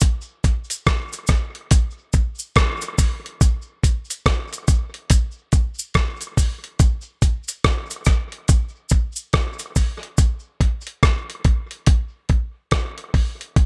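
Meditative and spacious, this excerpt from a longer reggae piece moves at 71 BPM in 4/4 with a swung sixteenth-note feel. An up-front, gritty, compressed soul sampler-style kit of hi-hat, thumpy kick and rim click sits beside a quieter acoustic cabasa with a tube-shaker and group-handclap character, heard in a small room, high-pass filtered and touched with tape echo. The cabasa stops at 10.4 seconds, while the drums run to 13.7 seconds under light reverb and digital ambience.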